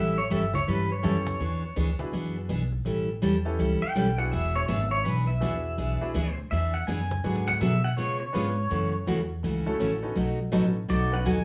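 A twangy, fingerpicked pedal steel takes the solo over full-bodied picked acoustic guitar with audible finger squeak and a growly pizzicato upright bass, all up front, while a snappy cajon joins softly in the background at 0.3 seconds and a brilliant, polished upright piano adds accompaniment from 1.0 seconds, making this cheerful, swinging western swing passage at 164 BPM in E mixolydian, with the steel's volume swells and slide ringing through a moderate studio reverb.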